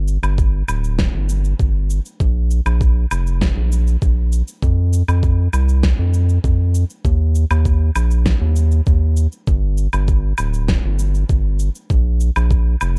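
A round, deep analog bass with a mellow square-and-sine tone sits up front from D1 to F2, joined at 0.1 s by a quieter layer of electronic shaker, woodblock and fat snare re-recorded in a large room and at 0.4 s by a gritty, thumpy sampler-style kick caught in a small room, shaping this blissful sunset chillout excerpt at 99 BPM in a straight 4/4, tuned to A4 = 444 Hz, with a dark, dry production.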